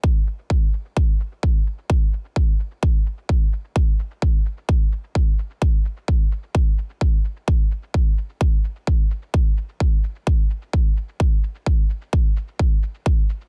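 An electronic kick drum and a shaker start together at the opening of this EDM passage, cut from a longer track, moving at 129 BPM in a straight 4/4. The kick is punchy and layered, sitting up front and carrying the weight of the groove. Behind it, a faint electronic shaker runs through a low-pass filter, giving it a muted, background presence. The mood is euphoric and anthemic, with little reverb on the sound and a dense, heavily limited modern master. The kick drops out at 13.2 seconds, leaving the shaker to close out the final moments at 13.5 seconds.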